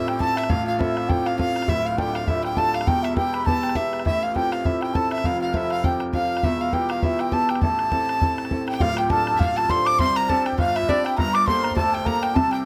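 Celtic folk reel at 202 BPM with a swinging, wild and driving feel in A minor, shifting to D minor at 8.8 seconds. Throughout, an airy, tongued wooden baroque flute carries the melody with vibrato over a biting, bowed single fiddle and a shimmering, hammered cimbalom on second lines, a brilliant, woody upright piano up front in accompaniment, and a damped, tight bodhran, all in a small room with moderate reverb, in a short cut from a longer piece.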